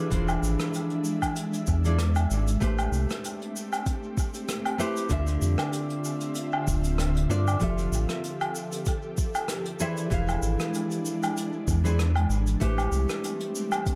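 Relaxed sunset chillout at 96 BPM in A minor, with a dark, woody fingerpicked nylon-string guitar carrying tape echo over an ethereal, warbling pad with ensemble chorus, a round, deep analog bass with tube saturation sitting up front, a soft electronic kick, and a distant brushed kit of hi-hat, rim click, shaker and woodblock, all bathed in spring reverb through an echo-heavy mix as the chords move from E7b9b13 to Am9, Dm9 and Fmaj9 in this excerpt from a longer piece.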